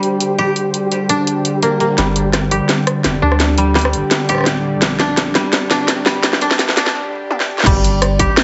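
Half-time drum and bass with a dark, heavy mood, cut from a longer piece, where woody koto arpeggios with delay sit up front over a tense, string-like drone that pumps with sidechain compression beside the layered kit's cracking snare, a flickering grainy texture stops at 2.0 s as a thick, saturated sub bass enters beneath a filter-swept build-up and drum fills, and a distorted electronic kick arrives at 7.7 s, all through a heavily compressed, radio-like sound.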